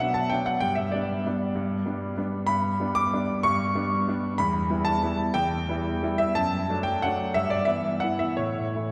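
A clear concert grand piano plays solo from 0.0 to 8.9 seconds, sitting up front with a natural tone, deep bass and long sustain across a range from E2 to D6. This elegant, playful classical piano waltz in 3/4 moves with a rubato feel between 160 and 203 BPM, tuned to A4 = 439 Hz, and passes through B minor, G, E minor, D over F sharp and E minor over G before resting on A. A wet church reverb with a 2.5-second decay surrounds the piano in this short passage cut from a longer piece.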